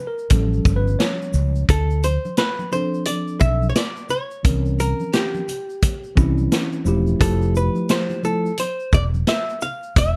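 A relaxed 87 BPM groove in 4/4 swings its sixteenths, setting a smoky, cool jazz-hop mood in this short cut from a longer hip hop piece. A worn, slightly out-of-tune tine electric piano opens the passage with mellow accompaniment, and by 0.3 seconds a vintage drum kit with a punchy kick, medium-tuned snare, hi-hat, shaker and rolled-off top joins alongside a round, amped fretless electric bass sitting low and up front. Tube shaker and congas add a bright, band-limited vintage shimmer in the background. At 1.7 seconds a dark, compressed hollow-body archtop guitar enters with a clean, picked melody in its upper-middle register, while the harmony moves through Dm7, C7b9 and Fmaj9. The electric piano drops out at 8.5 seconds, leaving guitar, bass, drums and percussion to carry the groove under a light reverb.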